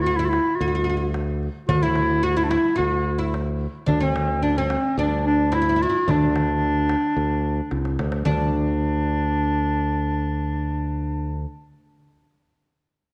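A straight 4/4 groove at 110 BPM drives this festive, warm Arabic maqam ensemble piece, cut from a longer performance. Up front, a clear clarinet carries the solo melody in a jazz style, with light vibrato and scooped notes. A woody, plectrum-plucked fretless oud with doubled strings plays a bright, deep second line beneath it, and a growly, punchy fingered electric bass sits up front with a direct, modern edge. In the background, a small clay-shell darbuka with a natural skin head is struck with hard hands in a live room. A drum fill from 7.7 s leads into a new section at 8.3 s, and the darbuka stops at 8.5 s. The whole recording sits in a moderate stage reverb and carries the worn, warbling pitch drift of old cassette tape.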